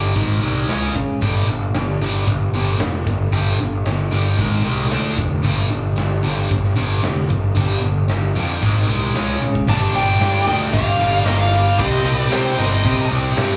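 This menacing, heavy hard rock excerpt moves in a straight 4/4 pulse, driven by a huge arena drum kit with a punchy kick, a medium-tuned snare, hi-hat, toms and crash cymbal, all sounding natural in a big room. A sludgy distorted guitar, bright, double-tracked and up front, grinds out the riff from the start with overdrive and slapback echo, while a growly fuzz picked electric bass sits equally forward with a bright, direct-and-amped bite. A drum fill at 9.4 seconds ushers in the second section at 9.7 seconds, where a very quiet, dark second sludgy guitar joins the riff. At the same moment a bluesy overdriven lead guitar takes the melody high above, its tone rounded and coloured by slapback and tape echo, shadowed by an octave-fuzz lead guitar in the background playing a murky second line until 13.1 seconds. The whole performance carries the light club reverb of a live gig heard through the venue's PA.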